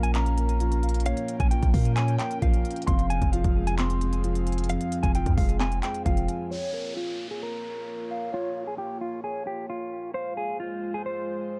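A half-time trap groove at 132 BPM opens this dark, menacing hip hop excerpt, with an up-front electronic kit of hard-clipped kick, crisp hi-hats and handclaps over a long, deep 808-style sine bass that strikes fast and decays. Underneath, a mellow concert grand piano supplies shadowy accompaniment with a heavy low end, while a clean, compressed, fingered electric guitar carries the melody through a warbly pitch drift, low-pass filtering and digital delay. A lo-fi, nostalgic tape-like pad, detuned with a sub octave, slowly blooms into sustained chords under chorus and its own reverb. At 0.8 seconds a hollow, woody clarinet-like synth lead slips in as a soft second line in the background, colored by vibrato, chorus and delay. Around 6.5 seconds the drums, bass and piano drop away, leaving guitar, pad and lead to drift over a filter sweep and an electronic downlifter. The harmony moves between Bbm and Fm within a dim, warm digital ambience.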